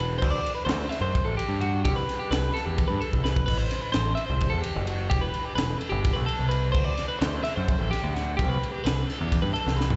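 Captured live through a venue's PA with recital-hall reverb and a muffled top end, this restless, wistful fragment of math rock and midwest emo moves in 7/8 at 257 BPM (eighths) as a clean, compressed twelve-string electric guitar picks arpeggios with slapback echo over a D7, Cmaj7(no3), Am9 and Em cycle, a growling, overdriven picked bass digs in low, and a crisp fusion kit with a high-tuned snare, punchy kick and pumping small-room sound drives ahead with fills at 3.1 and 9.7 seconds.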